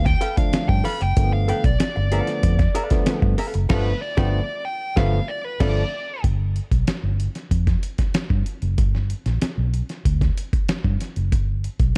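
A straight 4/4 funk groove at 94 BPM in G mixolydian gives this dark, strutting excerpt its swagger: a nasal, overdriven lead guitar with a parked wah solos over clean, compressed hollow-body archtop accompaniment and barky tine electric piano stabs, with a band accent from 3.7 s, and once those three parts drop out by 6.2 s, the round, foam-muted fingered bass and the gritty, sampler-style drum kit, with its thumpy kick and fat snare re-recorded in a large room, carry the groove to the end.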